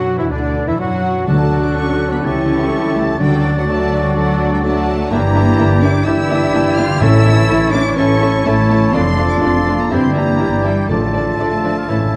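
Lush, vibrato-rich violins carry the melody over a full orchestra of flute, oboe, clarinet, background violins, violas, mellow French horns, trumpet stabs, ringing harp arpeggios, and deep cellos and double basses in this stormy, urgent classical excerpt at 125 BPM, which settles into D minor from 5.1 s, while very quiet soft-mallet timpani punctuate the texture and fill at 11.9 s, all within a moderate scoring-stage reverb and a dark, warm production touched by vinyl crackle.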